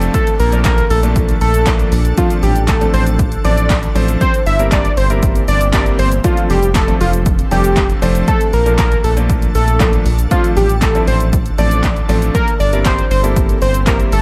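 This euphoric, upbeat dance-pop excerpt in F major opens at once with a punchy analog drum machine, a round, deep analog bass, a clear baby grand piano and a shimmering ambient pad, all moving at 118 BPM in a straight 4/4. The drums sit up front with a punchy kick and snare, handclaps, hi-hat and shaker, the snare, clap and hats carrying a short room sound. Bass and piano both breathe with sidechain pumping, the bass nasal and dark in its low register while the piano sounds intimate, with audible action noise and short sustain. At 0.1 seconds a fat, warbling analog lead takes the melody, its vintage sawtooth-and-square tone thickened by a sub octave, filter sweep, vibrato, chorus and delay, while a barely audible downlifter passes underneath until 2.2 seconds. Far back in the mix, the very quiet pad adds an ethereal, granular halo of detuned, octave-up shimmer over a looping progression of Bbmaj7, F6/A, C7/G and F6. 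Light reverb and a dark production frame the whole passage.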